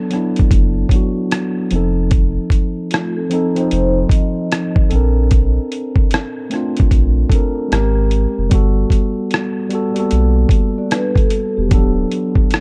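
A gritty, overdriven sampler-style drum kit with a thumpy kick, hi-hat and rim click sits up front in this dreamy, mellow lo-fi hip hop excerpt at 75 BPM in a swung 4/4 feel, alongside a round, deep sine sub bass and a tine electric piano colored by cassette tape and a low-pass filter, moving through chords such as D6, Bbmaj9 and G#maj9, while a soft-mallet vibraphone with tape echo and medium motor vibrato adds metallic, ringing touches at 2.9 s and 10.8 s in a dark, dry mix.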